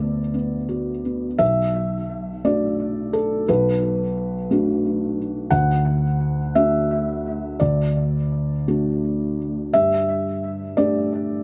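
A felt-muted upright piano opens alone on a D6 chord, its thick-felt tone soft, mellow and up front, touched with tape echo. This intimate neoclassical minimalist fragment, cut from a longer piece, sways in 6/8 with free rubato, moving at 1.4 seconds into a second section that passes through Bm7, D and Gsus2. Light reverb and a dark production keep the mood peaceful and close.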